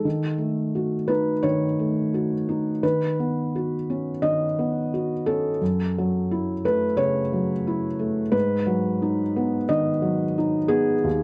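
Dark, warm production with a moderate studio reverb frames this melancholic, intimate neoclassical minimalist piano excerpt at 87 BPM in 4/4, played rubato and tuned to A4 = 437 Hz, where a solo felt-muted upright piano, mellow and up front with audible action noise, spans D#2 to D#5 over a D#m7b5 chord before moving to F#m7 at 5.6 seconds and G#m7 at 8.3 seconds.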